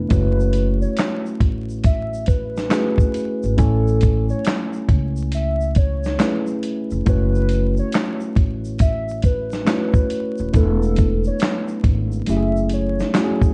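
Dark, crackling vinyl haze and light reverb frame this nostalgic, reflective lo-fi hip hop excerpt at a swung 69 BPM in F# minor, where a gritty, compressed sampler-style drum kit with a thumpy kick, snare, hi-hat and handclaps sits up front beside a woody, growly pizzicato upright bass, a mellow tine electric piano softened by cassette tape and a low-pass filter plays through F#m7, Amaj7 and E7sus4 chords, a warbling, detuned lead with chorus and vibrato carries the melody, and a grainy tube shaker stays in the background.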